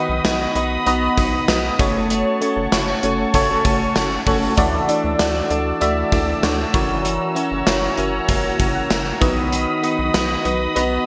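1980s-style pop in F# minor at 97 BPM, nostalgic and dramatic, this excerpt cut from a longer piece pairs an up-front, glassy FM electric piano with chorus, phaser and shimmer reverb against an evolving, detuned sawtooth pad and a clean, compressed electric guitar riff set in the background with lush chorus, digital delay and shimmer reverb. A rubbery, wave-folded square bass and a punchy gated 80s drum kit with hi-hat, kick, snare and tambourine drive the groove through chords of B, F#m, Dadd9 and F#7, with a band accent from 2.1 to 4.6 seconds. A fat, nasal analog synth brass stab sits very quietly between 3.5 and 4.5 seconds, all bathed in a bright 1980s-style digital production with a lush hall reverb.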